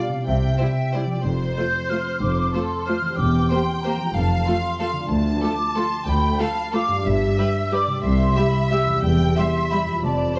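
Vinyl crackle and a moderate scoring-stage reverb surround closely miked, detailed playing in this festive, sweeping orchestral ballroom waltz in C major, cut from a longer piece and moving at 184 BPM in 3/4 with uneven, rubato beats. Airy, mellow flutes and a lush, softly attacked violin section carry a second line over a smooth, even viola accompaniment and ringing, thumb-plucked harp arpeggios, while dark cellos and a clear, focused double bass section enter at 0.3 s. A rich, vibrato-laden violin melody joins at 0.6 s and sits in the background as the harmony moves from C through F, Dm and G to C before settling on Em.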